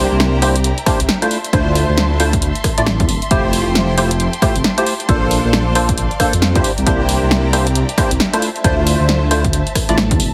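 A heavily compressed, radio-like sound with light digital ambience frames this bouncy, sunny two-step UK garage excerpt at 135 BPM with swung 16ths, where a dark, rumbling detuned saw bass sits up front beside hollow, ring-modulated organ stabs carrying ensemble chorus, cassette tape colour and digital delay, while a punchy analog drum machine of hi-hat, rim click and snare arrives at 0.2 seconds and an electronic kick joins at 0.9 seconds, and a lush, vibrato-rich symphonic violin section holds sustained chords in the background with sidechain pumping over a C9, Dm9, Fmaj9 and Bbmaj9 progression.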